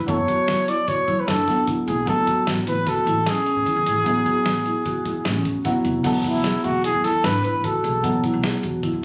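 Captured on a phone in a club, this short fragment has a roomy, reverberant sound, with a moderate studio reverb of about 0.7 seconds adding to the space. It is a driving, brooding progressive instrumental in 5/4 at 151 BPM with a straight feel, moving from F#m to Amaj7 and then settling on Esus4 at 6.0 seconds. A mellow classical-style trumpet with vibrato sits up front carrying the melody, and it takes a solo from 6.0 seconds. Beneath it, a smooth, vintage grand piano with short sustain provides accompaniment, while a soft-mallet vibraphone rings out airy, metallic arpeggios with slow motor vibrato and tape echo. A woody pizzicato upright bass with steel strings anchors the low end, and a gritty, compressed sampler-style soul drum kit adds a thumpy kick, medium-tuned snare, hi-hat and crash. A grainy, bright egg shaker enters quietly in the background at 6.0 seconds and stops at 8.2 seconds.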